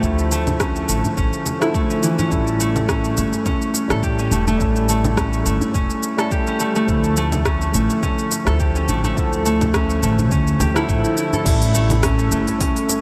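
An up-front, ringing concert harp plays fingerpicked arpeggios through an analog delay in this earthy, mystical organic downtempo excerpt, which has a light sixteenth-note swing and moves between Dmadd9 and A7. Beneath it, a barky, lightly overdriven tine electric piano with lush chorus, sidechain pumping and delay carries the accompaniment. A woody, gut-strung pizzicato upright bass with sidechain pumping plays alongside a deep, tape-warm electronic kick and a produced afro-pop kit of congas, smooth hi-hat, rim click, shaker and crash cymbal, while a very quiet, soft-handed djembe enters at 0.5 seconds, a faint electronic impact arrives at 11.5 seconds, and the dreamy mix is soaked in a huge ambient reverb.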